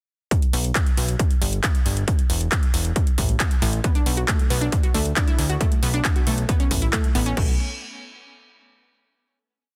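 A short, emotional and driving piece of uplifting trance at 136 BPM in a straight 4/4 opens at 0.3 s directly into the drop. A heavy, tape-warm four-on-the-floor kick sits up front, joined by a programmed big-room kit of metallic closed and open hats, handclaps on the backbeat and crash cymbal, both re-recorded in a small room. A punchy, funky analog bass plays off-beat, blending sawtooth and square waves with a fast-attack filter pluck, and pumps against the kick through sidechain compression. At 3.8 s a lush, detuned unison pluck, full-bodied with a noise layer and sine underneath, enters with a 6-step arpeggiated loop that drifts against the bar, pumping and trailed by delay, over chords moving through Bm7, Dadd9 and Aadd9. The drop gives way at 7.4 s to a final Asus2/B chord, all in a dry, dense and heavily limited modern mix.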